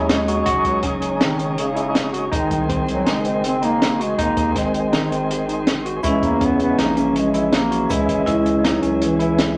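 In a straight 5/4 pulse, this intricate, bright progressive band excerpt sets a dark, smooth-topped bass clarinet melody over a thick tonewheel organ with light overdrive and slow rotary speaker, gritty, barky tine electric piano arpeggios, a round, nasal analog bass and an up-front acoustic jazz kit with a high-tuned snare and boomy kick, while a metallic, ringing vibraphone second line and a very quiet, grainy tube shaker join at 6.0 seconds, all set in a moderate club reverb with vinyl crackle.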